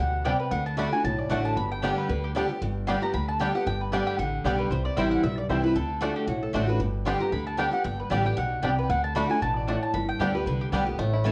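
A picked mandolin melody opens this excerpt of driving, virtuosic bluegrass, joined at once by a bright, boxy parlour-style steel-string guitar and a thumpy, dark upright bass plucked on gut strings, all three sitting up front. The tune races along at 229 BPM in 4/4 with a light swing on the eighth notes, moving through G, C and D chords in G major. The lead mandolin has a woody, double-string ring and a touch of plate reverb, while a second mandolin, rounder and set back in the mix, adds stabs from 0.2 seconds. A twangy, percussive banjo played with fingerpicks carries its own melody line in the background from 0.3 seconds, also bathed in plate reverb. The whole recording has a worn cassette-tape character with warbly pitch drift, set in a moderately reverberant large studio.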